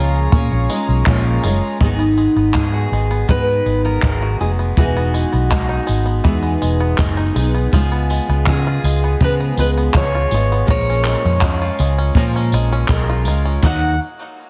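Heavily compressed with a radio-like studio sound, this short cut from a longer acoustic pop piece moves at a tender, wistful 81 BPM in straight 4/4, drifting through Bbm7, Abm7, Emaj7 and Db7 before settling toward Ebm. A reedy, breathing pedal harmonium holds sustained chords only for the opening 1.8 seconds, while a double-tracked picked steel-string guitar with an auditorium body picks out the accompaniment and a fresh-stringed, full-bodied fingerpicked jumbo guitar carries the melody. A bright, twangy bluegrass banjo adds delayed arpeggios, a dark, round, foam-muted vintage electric bass sits up front, and from 0.3 seconds a smooth small-room cocktail kit brings a punchy kick, crash cymbal, handclaps and tambourine.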